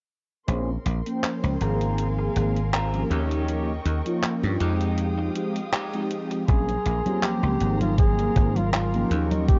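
Melancholic and woozy, this vaporwave fragment drifts at 80 BPM in a loose 4/4 with a light swing, cut from a longer piece and centered on Bb dorian. Mellow synth brass carries the accompaniment in a round, detuned sawtooth tone with chorus, 12-bit sampler grit and analog delay, while a dark chamber string section holds smooth bowed chords alongside it, and a punchy, foam-muted slap bass sits up front. A twangy electric guitar at the edge of break-up plays a picked riff through chorus, a low-pass filter and delay, with a filter sweep across the first section until it drops out at 6.3 seconds. A detuned 8-bit drum machine ticks along with congas, handclaps and hi-hat, and at 6.5 seconds a thumpy electronic kick arrives with a breathy, scooped flugelhorn melody wrapped in tape echo. The chords move through Bbm9, Ab69, Eb7 and Fm9, and the whole mix has a dry, worn cassette quality with warbling pitch drift and a dulled top end.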